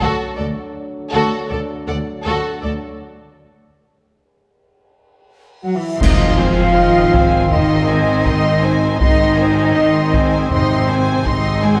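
Over a straight 4/4 pulse at 80 BPM, heavy-stick taiko drums open this triumphant, heroic epic orchestral film cue and return at 6.0 s as it lands on Ab major, after a break from 3.0 s filled by dark cymbals, concert bass drum, a reverse cymbal and a huge sub drop, while lush bowed violins carry the melody and a second line above expressive viola with portamento, smooth cellos, a focused double bass section, mellow sustained French horns and vintage trombones, joined from 5.6 s by an airy silver flute and smooth-topped trumpet stabs, inside a moderate concert hall reverb.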